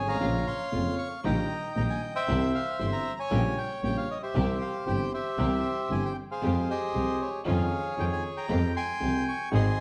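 The recording sits in a wet, large studio reverb, heard from further back in the room, which gives this brief tango excerpt a sultry, melancholic haze and a rubato feel. Up front, the bandoneon carries the melody with a reedy, dark and smooth voice. Beneath it, an upright piano with a woody tone and short sustain supplies the accompaniment, while a lone bowed double bass holds the bass line with a biting, earthy sound, light vibrato and a distant placement. From 0.2 seconds, a very quiet studio string section adds bowed stabs played sul tasto, pure and floating with a soft attack. The harmony moves from Bbm through Eb/Bb, C and Gdim/Bb before settling on Fmadd9, passing through Dbadd9/F and returning to Fmadd9 as the passage is cut off near 9.8 seconds.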